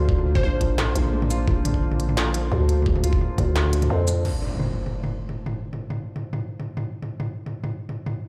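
A growling, buzzy 808-style bass sits up front through the opening drop, anchoring this heavy, spacious half-time drum and bass cut at 173 BPM in F dorian, with a slight swing on the sixteenths. Alongside it, a knocking, layered electronic kick and an industrial kit with a clanging snare, crisp hats, shaker, toms and crash drive the groove, the kick dropping out at 3.5 seconds while the kit carries on. A deep, moody pad of detuned sawtooth unison with a sub octave holds sustained chords in the background, pumping against the beat under chorus and reverb, and a felt-muted upright piano adds mellow, intimate arpeggios with audible action noise and digital delay for the first half. A brief crystalline wavetable pluck flickers on a single high note near the start. At 4.2 seconds the harmony moves from Bbadd9 to Fm as an electronic impact lands up front and a filter sweep moves across the pad, all set in a large, echoing studio space.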